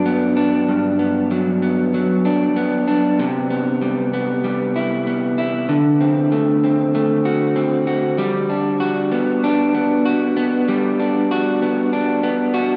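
A gently swung sixteenth-note feel in 4/4 carries this nostalgic, sunny indie pop fragment, cut from a longer piece. A lone electric guitar through a small old amp plays throughout, its picked tone dark and slightly broken-up, sitting up front with a vibrato effect as it moves through Gmaj7, Cmaj7 and D7 before returning to Gmaj7 at 8.2 seconds. A cathedral reverb with a long 4.9-second tail surrounds it, lending the church or concert hall setting a spacious glow.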